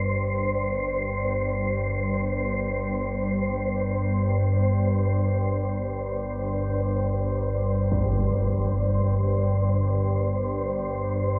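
In free time, this dark, unsettling ambient drone excerpt holds a Gsus4 chord, tuned to A4 = 439 Hz, with a nasal, organ-like drone thickened by ensemble chorus sitting up front in the low register while an airy, breathy, wind-like noise layer hovers high above, a huge, dark and very quiet impact landing at 7.9 seconds, all bathed in a cathedral reverb with a 6.2-second decay.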